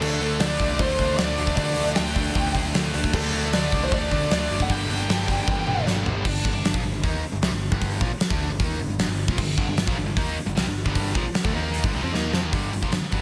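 Aggressive and heavy, this hard rock passage is driven by a gated 80s drum kit with a fat snare, tight kick and bright cymbals, set up front in a stone room and marked by drum fills, while a growly, punchy overdriven picked electric bass anchors the low end. A dark, bluesy overdriven lead guitar carries the melody through distortion and analog delay until 5.9 seconds. Underneath, a distorted electric guitar, a double-tracked sludgy distorted guitar and a tight distorted guitar churn out riffs in the background, with the tight guitar dropping out between 6.7 and 9.4 seconds.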